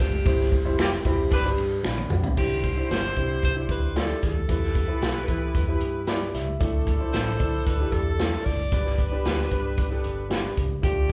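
A wet, roomy studio sound captures the band playing live together, with the drum kit sitting up front in the mix. This joyful, danceable cut from a longer uptempo 1960s-style soul piece moves at 114 BPM in a straight 4/4, in C major. A clear alto saxophone sings the melody with pop-style vibrato, while a distant horn section adds a second line from 0.8 seconds with light vibrato. Woody, boxy upright piano accompanies with audible action noise, and a dark, round, foam-muted electric bass sits in the background. The natural drum kit brings a punchy kick and medium-tuned snare, with a fill at 1.8 seconds leading from the opening section into the next. Very quiet ringing congas and a brief finger snap add texture, and the piano steps forward with a fill at 5.8 seconds over chords moving from Cadd9 through Em and Dsus2 to G.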